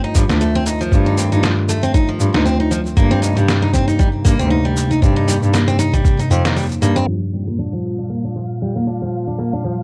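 A warbling, detuned tape-like pad holds sustained chords in the background as a bright, jumbo steel-string acoustic guitar picks arpeggios through 12-bit sampler grit and digital delay, joined by a muffled, overdriven electronic kick, cabasa and fat snare and an earthy, nasal bowed cello with light vibrato in this wistful, delicate folktronica fragment, before the cello drops out at 6.9 s, a filter sweep on the guitar begins at 7.1 s and a faint, flickering granular texture appears at 8.0 s.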